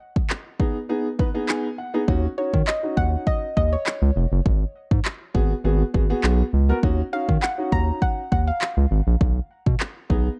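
A round, sidechain-pumped analog bass drives this energetic dance-pop cut in Eb minor at 101 BPM, arriving at 2.1 s beneath an overdriven, layered deep house kit of kick drum and handclaps, a baby grand piano with long sustain that also pumps and plays a short fill at 1.2 s, and a soft, dark pluck melody carried by chorus and tape echo, in a dry, close 1970s-style studio sound that moves through Ebm7 and Abm7.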